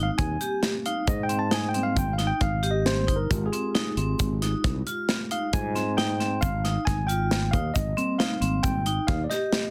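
Bright tine electric piano takes the lead from the first second, clean and up front with plate reverb, while hard-mallet vibraphone rings out metallic, airy arpeggios under a fast motor vibrato, growly fretless bass sustains beneath, and a punchy studio drum kit with a rolled-off top and a very quiet, grainy egg shaker drive this bright, intricate progressive band piece in 5/4 at 135 BPM through Abmaj7 and Fmadd9/Ab chords in a dense, heavily limited mix.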